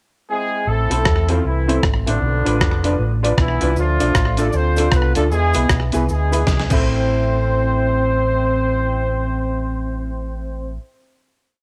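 A lightly reverberant, gritty ska piece in A harmonic minor at 155 BPM with a swung 4/4 feel, energetic and driving, where a punchy, vibrato-laden horn section carries call-phrase motifs in octave doubling over a round walking fingered electric bass, off-beat chops from a clean hollow-body jazz guitar and a worn, slightly detuned upright piano, a compressed sampler-style kit with a thumpy kick, fat snare, side-stick backbeat and slapback echo that plays a fill at 6.5 seconds before stopping, and grainy cabasa eighths in the background, all closing on a final hit from 6.9 seconds.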